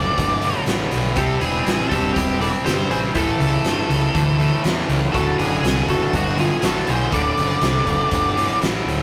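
A straight 4/4 groove at 121 BPM drives this raunchy, gritty blues rock power trio and southern rock excerpt in D mixolydian, where an oversized low-tuned drum kit with a fat snare and punchy kick enters at 0.2 s in a pumping stone room, a picked fuzz bass growls low, a double-tracked overdriven guitar riff sits bright and up front, an octave-fuzz lead guitar carries the melody with distortion, and a compressed, slightly broken-up second lead plays in the background over chords moving from D5 to C, A and back to D, all captured as a rough rehearsal-room recording with tube saturation.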